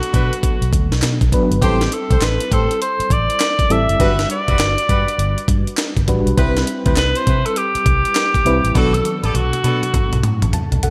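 New jack swing R&B at 101 BPM in 4/4, this punchy, slick excerpt rides a swung sixteenth-note groove over a Bm7, Am7, Gmaj7, Cmaj7 progression that returns to Bm7 at 8.7 seconds. A bright alto saxophone carries the melody up front with light vibrato and a pop-style vintage tone, its slapback echo shared by a distant, roomy horn section that punctuates with jazz-style ensemble stabs. Underneath, an FM electric piano with tremolo supplies dark, fast-attack, decaying chords with a noise layer. The breakbeat sampler-style drum kit sits up front, compressed and gritty, with a thumpy kick, high-tuned snare, handclaps, hi-hat and toms, and it rolls into a drum fill from 8.7 seconds to the end. A vintage foam-muted fingered electric bass adds a round, amped low end, and light reverb holds the mix together.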